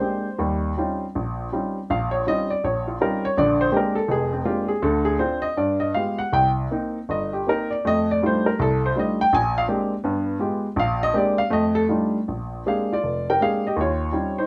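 Solo jazz piano with a relaxed, swinging mood: a baby grand, present and up front, plays alone through the whole 14.5-second excerpt cut from a longer piece, its loose, rubato feel drifting over a swung pulse in 4/4. Rich extended harmonies such as Eb13, Bb13 and G7b9 carry the passage, and a second section begins at 12.3 seconds, moving back through Bb13 to Eb13. A moderate club reverb places the instrument in a club-like room.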